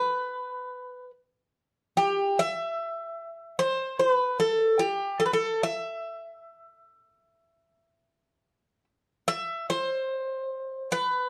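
Dark, warm production with lossy compression artefacts and a wet studio reverb frames this short fragment of melancholic Greek folk music in 9/8. A lone acoustic bouzouki sits up front, its picked double strings sounding metallic and warm, with some octave-doubled courses, moving between G4 and E5. At 9.3 seconds the melody moves into a new section, which carries through to the cut at 11.3 seconds.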